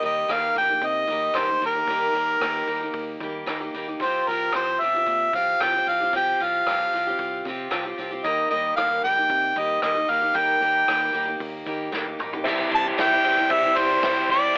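A straight 4/4 groove drives this hopeful folk rock and heartland rock excerpt. Picked steel-string acoustic guitar and a round fingered electric bass play alongside a vintage drum kit with dark cymbals and a punchy kick that sits in the background, while a clear, up-front harmonica carries the melody with a cassette-tape grain. After a drum fill at 11.9 seconds, a double-tracked overdriven electric guitar riff, a very quiet, intimate grand piano with audible action noise and a mellow tonewheel organ with slow rotary chorus join at 12.4 seconds. A faint jingly tambourine follows at 13.0 seconds, all within the lo-fi, telephone-like sound of a home cassette recording with light reverb.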